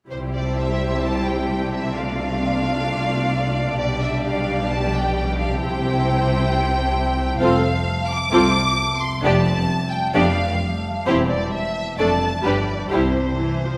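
A straight 4/4 pulse drives this spirited, lively classical excerpt, where a focused, up-front violin section sings the melody with a smooth top over a darker second violin line with soft attack, a rich, even viola accompaniment and ringing thumb-plucked harp arpeggios, while a double bass section and a cello section, the cellos set in the background, share the bass, the lush bowed strings carrying vibrato through harmony that moves from C to F and cadences back on C, all in a wet concert hall reverb.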